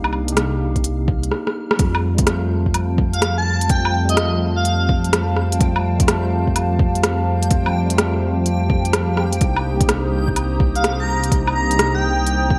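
A moderate, lush hall reverb and a bright 1980s-style digital sheen frame this wistful, nocturnal future garage excerpt at 126 BPM, with a 65% swing on the sixteenths. A mellow, clean tine electric piano opens under a filter sweep, roughened by 12-bit sampler grit, pumped by sidechain and trailed by digital delay, while a deep, rumbling detuned saw bass sits up front and a reversed, granular texture glimmers in the background. Crisp hats, rim clicks and woodblock from a tape-warmed electronic kit carry gated reverb, a soft electronic kick joins at 0.8 seconds, and a drum fill and band accent lead into the main section. There the harmony moves from Cm7 to Fadd9 as a dark, wave-folded analog pad with chorus, grit and sidechain pumping settles in from 2.5 seconds. An airy, dreamy lead with vibrato, chorus and digital delay sings briefly near 3.1 seconds and returns at the close, once the chords have fallen back to Cm7.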